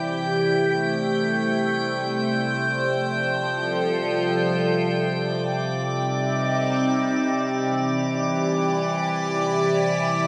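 Ambient music in free time, reflective and serene, cut from a longer piece, where an up-front evolving wavetable pad with a morphing triangle tone, chorus, phaser and built-in reverb holds slow-attack sustained chords moving through Am7, F, Cm and Em7, over a resonant overtone-sweeping sawtooth-and-sine drone low in the register, while an up-front drifting glass-harmonics texture adds calm, glassy sine tones high above, all three sounding throughout the 10.3 seconds in a wet concert hall reverb with a soft, dark top end.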